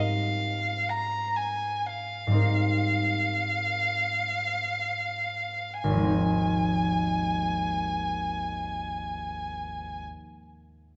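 A single bowed violin carries the melody, its rich, focused, vibrato-laden tone placed up front and moving between F5 and Bb5. Beneath it, a concert harp gives fingerpicked, ringing accompaniment across a deep span from Ab1 to Bb4, sitting just as close in the balance. This luminous, pastoral fragment of impressionist classical music unfolds in free time in Ab major, easing to a slower pace over its opening stretch before a new section begins at 5.8 seconds. The harmony rests on an Abmaj9 chord, then settles onto Ab6 at that point. The violin stops at 10.0 seconds, and the harp sounds on until 10.3 seconds. A moderate scoring-stage reverb surrounds the duo, and the dark, warm production keeps everything below 7.8 kHz throughout.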